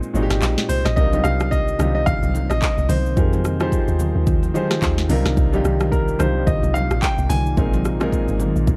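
A deep, round log drum bass anchors this late-night amapiano excerpt from 0.1 seconds, its percussive, quickly decaying notes carrying a noise layer. Up front, an electronic afro-pop kit sets a swung groove with a deep kick, sharp snare, metallic hi-hats, rim clicks, handclaps and shaker, while ringing, vintage-sounding congas with hard hands sit further back from 1.1 seconds. A clear grand piano supplies the chordal accompaniment, and a second, intimate concert grand carries the melody with audible action noise, long sustain and a touch of delay. From 2.3 seconds a moody, detuned sawtooth pad with chorus and its own reverb hovers in the background, pumping under sidechain compression. The harmony drifts through Bb9sus4, Cm11 and Fm11, and the small-room, dark production gives the piece a brooding depth.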